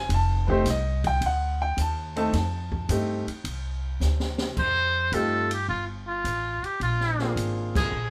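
A brilliant grand piano and a woody, thumpy pizzicato upright bass open this warm, sophisticated small-group swing and bop excerpt at 107 BPM in F mixolydian, joined at once by an acoustic drum kit with dark cymbals, a high-tuned snare and a boomy kick, whose fill at 4.0 seconds ushers in a buzzy, thin trumpet with a metal mute and vibrato carrying the melody up front from 4.6 seconds, until a band accent lands at 7.6 seconds in a moderate studio reverb.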